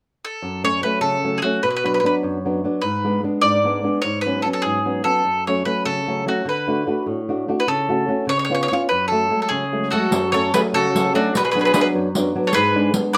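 A picked, double-strung bowl-back mandolin up front carries the melody of this passionate, romantic Italian folk serenade in F# minor at 99 BPM in a straight 6/8, over a dark, boxy, thumb-plucked flamenco guitar with audible finger squeak, while a second, quieter mandolin adds a second line from 9.9 s and a riq with bright jingles and soft hands enters at 10.1 s, set in a moderate studio reverb.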